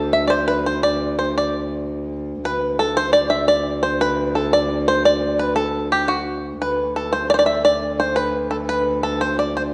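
A medieval dance in a straight 6/8 with an ancient, rustic mood, this excerpt sets a twangy, fingerpicked bluegrass banjo up front carrying the melody over a distant, woody viola da gamba holding a low, ringing bowed drone with light vibrato, both set in a wet recital hall reverb for just under 10 seconds.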